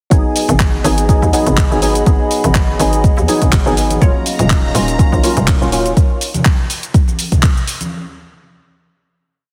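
A four-on-the-floor overdriven kick and swung claps, hats and shaker drive this hypnotic 123 BPM deep house piece in Eb minor, where a hollow, bouncy FM bass and mellow, chorused organ stabs pump against a deep, moody analog pad and a warbling, nostalgic tape-like pad over Abm7 then Ebm9, with distant congas entering at 0.5 seconds, a woody mallet pluck and a shimmering string-machine note arriving at 4.0 seconds, all pressed into a heavily compressed radio sound.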